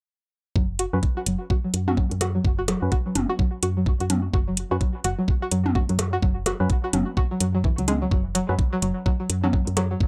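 Minimal techno with a sparse, hypnotic swung groove, cut from a longer piece: a knocking, up-front kick and a woody, round FM bass with sidechain pumping start together with a bright, twangy, nasal resonator pluck riff carrying chorus, sidechain pumping and analog delay. Metallic hats arrive at 0.8 s, a hollow, dark organ stab with chorus and tape echo joins at 0.9 s, and overdriven electronic toms and percussion blips enter at 1.9 s, all within light reverb on a dry, gritty hardware recording.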